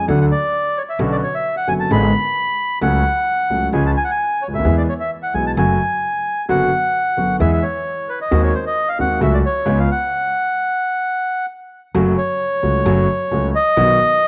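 A reedy, close-miked bandoneon carries a dramatic, melancholic tango melody in F# minor at 132 BPM with a rubato feel, over an intimate concert grand piano with audible action noise and deep bass and a woody pizzicato upright bass; all three break off in a stop at 10.1 seconds before returning at 11.9 seconds, in a moderate echo chamber reverb with small room ambience, in a clip cut from a longer piece.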